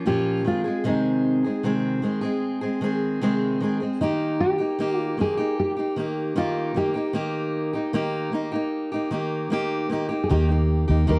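A dry, close recording with a 1970s studio character opens this short, carefree slice of acoustic pop, cut from a longer piece and moving at an easy, straight 76 BPM in 4/4. A bright, fingerpicked steel-string acoustic guitar sits up front as the accompaniment from the very start, ranging from Bb2 to Ab4 as the harmony moves from Ab/C to Eb at 4.0 seconds. A nylon-string guitar carries the melody alongside it, its dark, thumb-plucked, deep classical tone set in a tight register between Eb4 and Bb4 and trailed by a slapback echo. Near the close, at 10.3 seconds, a vintage muted fingered electric bass arrives on a low Eb2, round, punchy and foam-muted, with an amped edge that pushes it to the front of the mix. The whole passage feels sunny and unhurried, a single section of gentle guitar parts grounded at the last moment by the bass.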